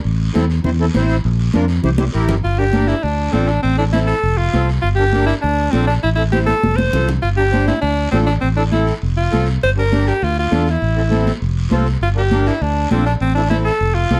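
A raspy, band-limited guiro opens this passionate, danceable cumbia at a brisk 201 BPM in G dorian, joined almost at once by a round, dark fingered electric bass up front, a reedy, sweet accordion with light tremolo tuning, and bright, high-tuned congas struck with hard hands in the background. At 2.4 seconds an edgy, forceful alto saxophone takes the solo melody, close-miked with vibrato and a plate reverb, over a cycling progression built around Gm, Dm, Am and F. The production is dark and lightly reverberant, with the bass and saxophone sitting up front.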